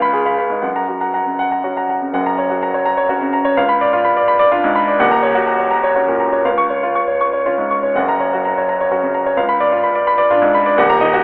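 Moving in 6/8 with a flexible, rubato pulse, this short excerpt from a virtuoso classical piano study carries a brilliant, heroic mood. A solo grand piano plays throughout, its tone clear and present, placed up front and ranging from deep bass notes up into the bright upper register. The harmony circles between the home chord and its dominant, colored by a flattened-ninth dominant and a minor seventh chord, before settling back on the home chord at 8.0 seconds and turning toward the dominant again. A moderate recital hall reverb surrounds the instrument, yet the whole recording has the narrow, boxy quality of a telephone line. The opening phrase is brief, and a restatement of the same material begins at 2.2 seconds and carries through to the cut at 11.2 seconds.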